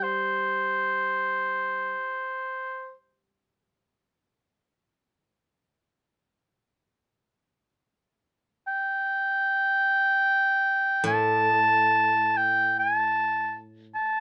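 A warm, vintage-toned oboe leads this still, austere excerpt of Japanese traditional chamber music, playing a solo melody in the classical style that sits up front in the mix. It shares the opening at 0.0 seconds with a bright, woody koto plucked with fingerpicks, which holds a low, dry accompaniment well beneath it. After a brief opening phrase, the oboe returns at 8.7 seconds as the material repeats, and the koto rejoins at 11.0 seconds. The instruments are tuned to A4 = 438 Hz. A light reverb and a gently rolled-off top end give the sound an intimate, unhurried character that suits the music's spare restraint.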